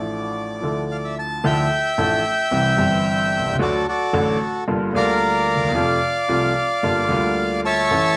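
Tango in D minor at 111 BPM with a rubato, sultry and passionate feel, this short cut from a longer piece sets a reedy, up-front bandoneon melody over clear baby grand piano accompaniment in a moderate studio reverb, moving from Dmadd9 through C, D, Gm7 and F, with the tuning set at A4 = 437 Hz.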